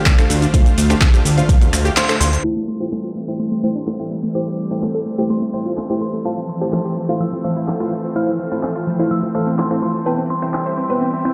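An overdriven, deep electronic kick leads this emotional, driving progressive house excerpt in A minor at 126 BPM, sitting up front before it stops at 1.6 seconds. A fat, detuned sawtooth bass with tube saturation and sidechain pumping holds a low D beneath a Dm7 chord, and a band accent lands at 2.0 seconds as a glassy, crystalline FM bell melody enters high in the register, coloured by chorus, phaser and delay. At 2.4 seconds the bass stops and the harmony moves through Am7, Fmaj7 and Cmaj7 while a filter sweep runs across the bright, punchy unison pluck arpeggios. Throughout, a lush supersaw pad sustains the chords and a soft, nasal chord stab adds 12-bit sampler grit, chorus and delay, with pad, stab and pluck all pumping under sidechain. A deep house kit of finger snaps, handclaps, metallic hi-hats and shaker carries a tape-warm, low-passed tone, and the mix sits in a moderate hall reverb, heard as if played through a big sound system in a bare stone room.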